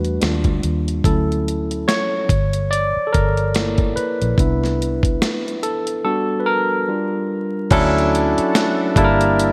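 R&B and neo-soul with a soulful, sensual swing, cut from a longer piece, where a barky, up-front tine electric piano takes a solo through the opening 7.7 seconds over a round, foam-muted fingered bass and a gritty, sampler-style drum kit with a thumpy kick and gated reverb, the drums falling silent from 6.0 to 7.7 seconds before returning, and a lush, detuned unison pad with chorus and phaser slips in quietly at 8.3 seconds, all set in a plate-reverb room with bright 1980s-style digital sheen and vinyl crackle.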